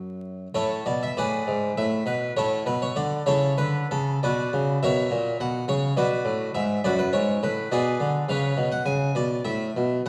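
A solo harpsichord in the Flemish style, with two sets of strings, carries this brief, radiant baroque-style suite movement in A major, cut from a longer piece. The playing flows in 6/8 at roughly 57-71 dotted-quarter beats per minute, with a rubato feel that lets the pulse breathe. Its plucked, full tone sits up front and close-miked, spanning F#2 to G#5, while a recital-hall reverb with a 1.5 second tail surrounds it. The harmony moves from A through B minor and diminished passing chords before settling on an open Asus2 near 9.5 seconds. The sound carries the patina of worn, warbling cassette tape, with vinyl crackle and a drifting pitch across the whole ten-second excerpt.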